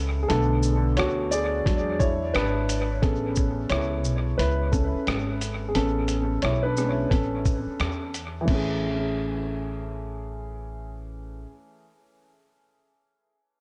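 A dark, mellow upright piano with a smooth, vintage tone takes a solo through the first 8.5 seconds of this cool, relaxed jazz-hop excerpt at 88 BPM in A major, trailing dub echo over Bm7, E7 and Amaj7 chords, while a woody, gut-strung pizzicato upright bass sits up front and a muffled, compressed, sampler-style drum kit with thumpy kick, hi-hat, rim click, shaker and crash, captured in a large room and also steeped in dub echo, swings its sixteenths before dropping out at 8.7 seconds, the whole lightly reverberant mix leaning heavily on echo.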